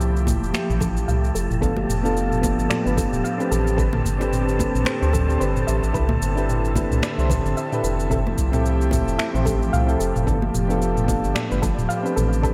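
Sunny and warm, this 111 BPM sunset chillout excerpt swings gently over Fmaj9, G9, Am11 and Cmaj9 chords, with a deep, up-front analog bass under an airy, chorused pad, a tape-toned R&B kit of finger snaps, shaker and toms, a knocking electronic kick and ringing, close congas and bongos in the background, a very quiet detuned pluck playing arpeggios, a wind-like tuned noise texture, and warbling electric-piano-like synth keys with 12-bit sampler grit and diffuse delay entering at 1.6 s, all set in a dreamy mix soaked in plate reverb.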